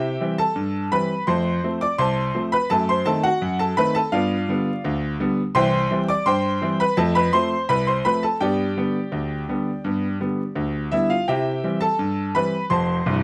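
Cheerful and jaunty, this short ragtime piano excerpt in C major moves at 84 BPM in a straight 2/4, with a clear, worn grand piano playing solo up front across a range from C1 to D6, caught by close, detailed microphones with little reverb and a layer of vinyl crackle as the harmony passes through an F-sharp diminished seventh and G7 before settling back on C.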